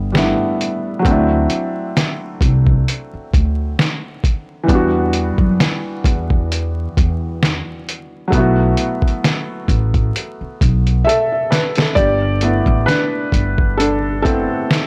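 A lazy 66 BPM swing in 4/4 carries this dreamy, mellow lo-fi hip hop excerpt in G major, where a pitched-down, compressed sampler-style kit with a thumpy kick and fat snare sits up front, overdriven with 12-bit grit, and plays a fill from 11.0 to 12.0 seconds. Beneath it a woody pizzicato upright bass with transformer saturation moves through G69, D7, Em7 and B7sus4, while an intimate felt-muted upright piano, soft and up front with audible action noise, carries the accompaniment through a cassette-tape haze and takes a solo from 12.0 seconds. The whole dry, gritty recording is dusted with vinyl crackle.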